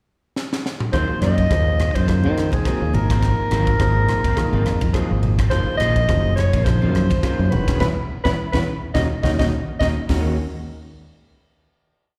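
A crisp drum fill opens this electric jazz fusion piece in Eb dorian at 105 BPM. At 0.9 seconds the band drops into a driving, slick samba groove, with a punchy kick, a high-tuned snare and a growly, up-front fingered bass riff, and very quiet, soft-handed congas join moments later. A mellow, distant soprano saxophone spins a free jazz solo over quartal chord stabs from the grand piano and dark, slightly broken-up funk strumming from a background guitar with chorus, and these three parts carry plate reverb and slapback echo. A second drum fill and a band accent from 7.8 seconds lead to a final chord at 10.1 seconds, all heard as a live gig through the venue's PA in a reverberant recital hall.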